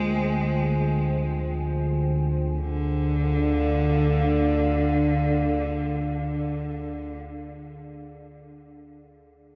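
Floating in free time, this short cut from a longer dark ambient drone piece feels ominous and unsettling, its harmony shifting from Fm to Dm at 2.6 seconds. An up-front, warbling analog drone with chorus and pulse-width modulation anchors the low end, while a deep, detuned analog pad with ring modulation and chorus holds moody sustained chords. A rich, focused solo cello carries the bowed melody with vibrato and tape echo, and a very quiet, pure quartz singing bowl rings softly until 2.6 seconds, all steeped in a huge, dark reverb.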